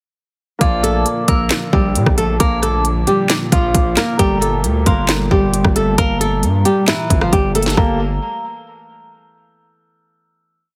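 A half-time trap beat at 134 BPM in 4/4 drives this eerie, brooding hip hop piece in G minor, its up-front electronic kit pairing a hard-clipped kick and sharp snare layered with handclaps, crisp hi-hats with fast rolls, and rim clicks. A distorted 808-style bass carries heavy, saturated sub-bass notes that follow the kick and slide in pitch, lingering until 8.2 seconds. Over it, a fingerpicked flamenco guitar plays a looping melody doubled in octaves, up front with audible finger squeak, softened by a low-pass filter and given tape echo, repeating like a sampled loop. A dark, detuned FM synth bell adds a sparse, inharmonic counter-melody with chorus, phaser and tape echo, while a mellow baby grand piano holds spread chords in the background and a lush symphonic string section sustains bowed, vibrato-rich chords beneath. The harmony moves from Bb to Gmadd9 across the hook that begins at 0.6 seconds, before a final chord takes over at 7.8 seconds, all within a heavily compressed, radio-like mix touched by light studio reverb.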